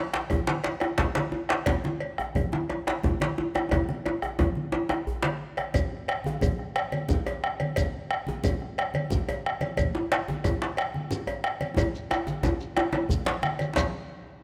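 In a rolling 12/8 at about 119 dotted-quarter beats per minute, this West African traditional drum ensemble plays a straight, driving groove that gradually speeds up throughout this short cut from a longer piece. A round, vintage-toned bombo sits up front beside a hard-handed, medium-tuned djembe, while a second djembe adds tight, cracking strokes laced with metal rattles. Low-tuned congas with a thick-skinned, warm body sound more distant, and a metallic cowbell keeps time throughout. The up-front djembe drops out at 5.4 seconds, and a grainy, mellow shekere enters close by at 5.8 seconds as the music moves into its second section. The up-front djembe returns at 9.9 seconds, and drum fills close out each section. The close, detailed sound sits in a moderate concert-hall reverb, giving the earthy ensemble a resonant but clear presence.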